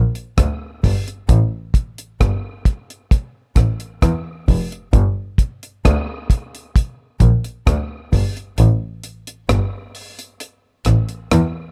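Dub reggae in a meditative, hypnotic mood, this short cut pairs a dry, dark acoustic drum kit of hi-hat, tight kick and rim click, its top rolled off and the kick dropping out at 8.6 seconds, with a clear, intense bowed double bass carrying light vibrato, both sitting up front in a room with little reverb.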